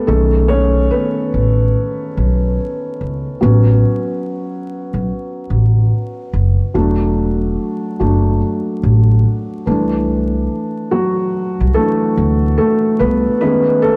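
A lazy 16th-note swing at 72 BPM in 4/4 sets up this nostalgic, dreamy lo-fi hip hop excerpt in A major, where a soft, mellow felt-muted upright piano, up front and softened by a low-pass filter, takes an intimate solo over chords moving from B13 through A69, E9sus4 and C69, while a woody pizzicato upright bass on steel strings sits close beneath from 0.1 to 13.2 seconds, all wrapped in light studio reverb, vinyl crackle and a dark production with lossy compression artefacts.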